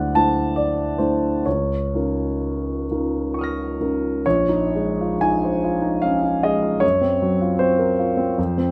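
Luminous and hazy, this brief excerpt of impressionist classical solo piano drifts in 3/4 with a free, rubato feel. A clear concert grand, natural and up front with a deep bass, spans from Bb1 to Bb6 under light reverb, its extended harmonies moving from D9 and Db69 in the opening passage to Bbm11 at 4.2 seconds and Gbmaj7#11 at 6.8 seconds.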